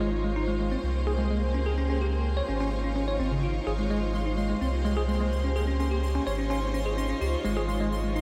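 IDM at 127 BPM in Ab major, this short excerpt from a longer piece feels glitchy and intricate, sitting in a dreamy mix soaked in plate reverb. A cloudy granular pad holds sustained chords up front, its detuned sine and sawtooth layers blurred and evolving under shimmer reverb, while a bell-like tine electric piano spins clean arpeggios through analog delay. Beneath them a round sine sub bass gives a deep, rounded foundation with a fast attack. At 3.7 s a pulsing, tempo-synced gated texture enters high on C6, its detuned triangle tone treated with chorus and sitting at a lower level in the mix. The harmony moves between Abmaj9 and Dbmaj9, returning to Abmaj9 at 7.4 s.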